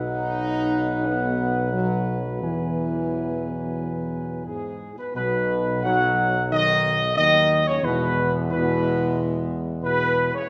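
A dark, punchy trumpet section carries the melody up front from the opening moment, its smooth top ringing over mellow French horn chords, distant and roomy trombones held tight in the background, and a clear tuba bass with light vibrato. This triumphant, regal classical fanfare, cut from a longer piece, moves in a straight 4/4 through two short phrases, the second arriving at 5.2 seconds. A wet scoring-stage reverb wraps the brass ensemble in a spacious sound.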